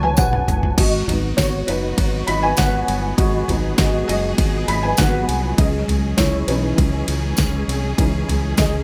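Anthemic and hopeful, this piano-driven pop excerpt at 100 BPM in 4/4 opens on a punchy drum fill over B from a fat-snared, up-front kit before the soft, felt-muted upright piano, carrying an ensemble chorus and audible action noise, takes a solo over G#m7 and C#madd9, supported by a round, dark fingered electric bass, warm studio strings with vibrato and portamento, and a jingly tambourine in the background, all under light reverb and a bright 1980s-style digital sheen.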